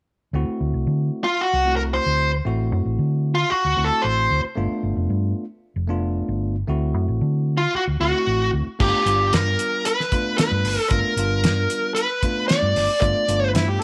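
A smooth, overdriven lead guitar with slapback echo carries the melody in this gritty, rollicking soul-blues excerpt, over a bright, bell-like tine electric piano and a round, punchy hollow-body bass, while a cloth-damped, thuddy drum kit with a fat snare and dark cymbals joins at 8.8 s and a warm, overdriven harmonica with scooped notes slips in at 13.6 s.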